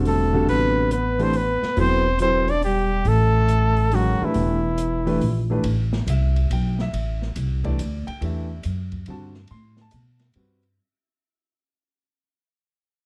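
A swung 3/4 pulse at 140 BPM drives this cool, hypnotic modal jazz excerpt in A dorian, resting on a single Am11 chord. The upright bass sits up front with a woody, thumpy gut-string pizzicato. An open acoustic drum kit in a small room plays hi-hat, ride, snare and a boomy kick, its cymbals dark and smooth. A concert grand piano with a deep, natural low end supplies the accompaniment throughout. The trumpet carries the melody with vibrato, scooped notes and a punchy, smooth top, joined on a second line by a mellow, close-miked trombone with light vibrato; both horns stop at 5.5 seconds. From 5.6 seconds the piece fades out as piano, bass and drums continue, the mix set in a moderate studio reverb with a dark, warm production.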